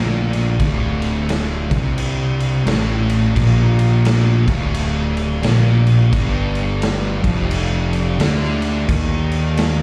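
A growly, overdriven fingered bass sits up front in this hypnotic, sludgy stretch of stoner and doom metal, cut from a longer piece and moving at 87 BPM in 4/4 with a swung eighth-note feel in D phrygian. Two thick, dark fuzz guitars grind out the riff behind it, one in the background and one very quiet, while a mellow, round tonewheel organ holds sustained chords through a slow rotary speaker. A raw garage drum kit with a punchy kick and a gritty, rolled-off top comes in at 0.3 s, and the harmony shifts from D5 to G5 at 6.1 s, all heard as a live gig through the venue's PA with club reverb.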